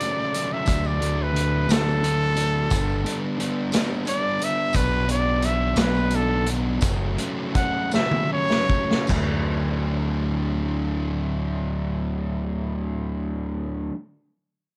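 A clear, close-miked trumpet solo with light vibrato opens this upbeat, carefree indie rock piece in 6/8, over a double-tracked fuzz guitar riff and a gritty, punchy vintage drum kit with dark cymbals, joined at 0.7 seconds by a growling, overdriven electric bass and a jingly tambourine in the background, before the tempo slows, a drum fill arrives and the trumpet drops out at 9.1 seconds, leaving the guitar and bass to finish in a dark, lightly reverberant mix.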